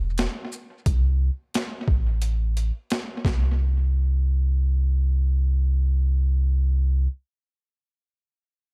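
Soulful and confident, this short boom-bap hip-hop excerpt moves at 88 BPM in 4/4 with a light 16th-note swing. A deep, sustained sub bass with an octave layer holds up front from start to 7.1 seconds, its mellow sine-like tone paired with a fast attack. A gritty, pitched-down sampler-style drum kit with a thumpy kick, high-tuned snare, hi-hat and shaker plays from 0.2 to 3.4 seconds, overdriven and fed through tape echo, with the kick dropping out from 2.2 seconds in a dry but echo-heavy mix.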